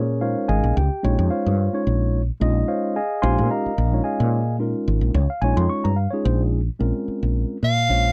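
Electric jazz fusion at 110 BPM in 4/4, this short excerpt sits in Bb dorian with a light swing on the sixteenths and a slick, intense mood. A mellow tine electric piano holds the accompaniment throughout, its clean, direct tone resting on a Bbm11 chord before the harmony moves to Bbm9 at 6.8 seconds. Underneath, a woody fretless electric bass plays up front in the low register, its round, hollow-body sound dark and amped. At 7.6 seconds a clear soprano saxophone enters on a single F5, close-miked with vibrato and a soft attack, stepping forward as a jazz-style solo voice. The dry, close 1970s-style studio sound keeps every part present and intimate, with little reverb around them.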